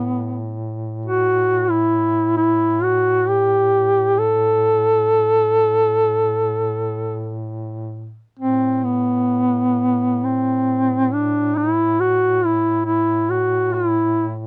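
A mellow duduk carries the melody up front, its tone soft in attack with scooped notes, vibrato and a smooth top, moving between B3 and A4 in free time over a second duduk holding a low A2 drone well beneath it. This short cut from a longer Caucasian folk lament in A dorian feels longing and solemn, shifting into a new section at 8.4 seconds before the melody stops at 14.3 seconds and the drone sounds on to 14.5 seconds. The sound is dry and close, like a 1970s studio with little reverb.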